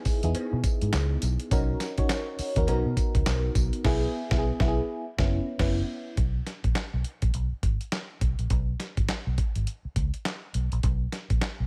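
A dry, up-front mix opens this bouncy, upbeat new jack swing excerpt in swung 4/4, built on a gritty, compressed sampler-style drum kit with thumpy kick, medium-tuned snare, hi-hat, handclaps, tambourine and crash, plus a dark, round, foam-muted electric bass that plays through to 11.7 seconds. An FM electric piano with tremolo and phaser, its fast-attack, decaying tone carrying a noise layer, supplies the chords until 6.2 seconds. A very quiet metallic cowbell sits distant in a large room early on, and the band hits an accent from 3.8 seconds before the harmony falls away in the closing stretch.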